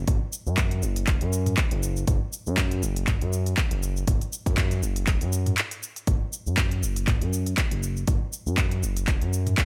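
A smooth, gliding synth bass opens this afro house excerpt, its mellow sawtooth and square-wave tone sustained with portamento and pumping under sidechain compression. A split second later the drums arrive: a deep, layered electronic kick with overdrive and small room ambience, joined by an afro-pop kit of handclaps, crisp hi-hats, shaker and toms. The groove runs in 4/4 with a light swing on the sixteenths, lending the earthy, driving mood a loose feel. A brief break falls between 5.6 and 6.1 seconds before the parts carry on, with the drums running to 9.7 seconds. The mix is dry and close, with the bass, kick and kit each placed up front.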